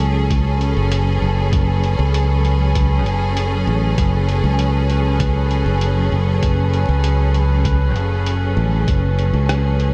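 In a dark digital ambience, this meditative, deep ambient dub excerpt rests on a single minor chord, with a clear bowed string section holding sustained chords with vibrato, an up-front fingered electric bass, a glassy harmonics texture with chorus and reverb drifting in the background, a compressed, pitched-down sampler-style kit ticking hi-hat and rim click, and a muffled, thumpy electronic kick arriving at 0.3 s.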